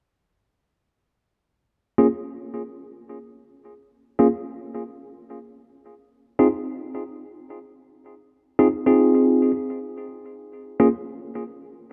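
Glitch hop in free time and Bb minor, this short cut from a longer piece carries a gritty, funky mood. A single bell-like tine electric piano plays stabs from 2.0 s to 10.9 s, sitting between Bb3 and Ab4. Its tone is bright and clean, heard up front as if through built-in speakers, and shaped by a low-pass filter and delay. The harmony moves from Bbm7 to Ab6 at 5.1 s before returning to Bbm7. A moderate plate reverb with a long 3.4-second tail surrounds the stabs.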